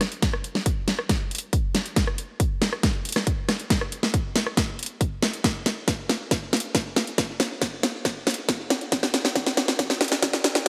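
A menacing, heavy wobble dubstep fragment at 138 BPM in half-time opens with an up-front electronic drum kit of metallic hi-hats, rim clicks and a huge snare. A punchy, layered kick joins at 0.2 seconds, and the whole passage is a build-up driven by a continuous drum fill and a filter sweep, set in a lush hall reverb with a high-pass filter.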